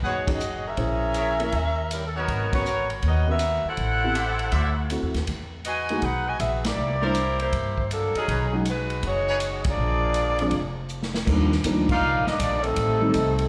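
Brassy and energetic, this swinging big-band jazz excerpt, heard live through a club PA with light small-room reverb, puts a clear, loose saxophone section with soft-attack vibrato up front on the melody over woody, thumpy pizzicato upright bass, a dark, mellow grand piano and a polished, airy drum kit with a punchy kick, while a bright, distant trumpet section adds stabs and a tight trombone section with light vibrato enters on a second line at 9.7 s, ahead of a drum fill that ends at 11.3 s.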